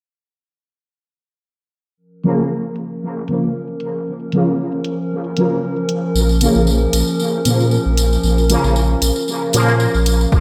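Meditative and hazy, this dub techno fragment opens at 2.2 seconds with juicy, detuned sawtooth polysynth stabs run through a resonant filter sweep, phaser and dub echo, over dry electronic hi-hats dulled by a low-pass filter, and at 2.7 seconds a nostalgic, warbling lo-fi pad enters, holding sustained chords with chorus and a slow attack. At 6.1 seconds a deep, round sine sub bass arrives up front, pumping with the pad and polysynth, joined by a close, jingly tambourine. A punchy, dry kick drum lands only at 10.3 seconds, as the whole dreamy mix sits soaked in a lush hall reverb.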